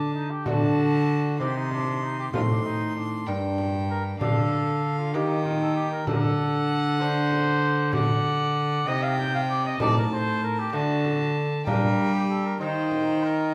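Heard from further back in a wet stone room with a 1.2-second reverb, this short cut from a longer renaissance-style consort dance sounds solemn and courtly, moving at 64 BPM in a straight 6/8. A warm, roomy cornet carries the melody in a classical solo manner. Above it, a single violin with a reedy gut-string tone and light vibrato plays a high second line. Underneath, a fingerpicked lute with bright, delicate double strings supplies the accompaniment, while a bowed cello with a rich, nasal period tone sits up front on the bass. A small acoustic frame drum with a distant, large-room sound joins at 0.5 seconds and stops at 13.2 seconds, as the harmony moves through Cm, Gm, Eb and D.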